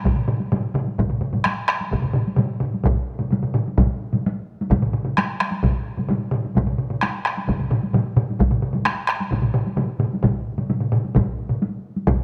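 Japanese traditional taiko drum music, driving and ceremonial in a straight 4/4, cut from a longer piece. A solo taiko struck with hard sticks opens at 0.0 seconds with a vintage, band-limited tone placed up front. Three taiko ensembles join at 0.1 seconds: one with heavy sticks, up front in a small room; a second with heavy sticks in a live room; and a third with hard sticks, close and dry. Close, detailed miking and a moderate scoring-stage reverb frame the performance.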